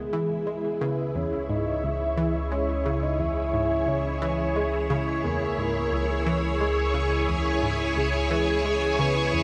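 A lush, vintage string-machine ensemble, a soft octave-layered synth lead with chorus, tremolo and tape echo, a bright, detuned analog pluck riff colored by cassette tape and echo, and a fat, thick analog bass holding one low note all sound together from the start of this hypnotic, cosmic stretch of sequencer-driven space music, bathed in a huge, wet ambient reverb over a single minor chord.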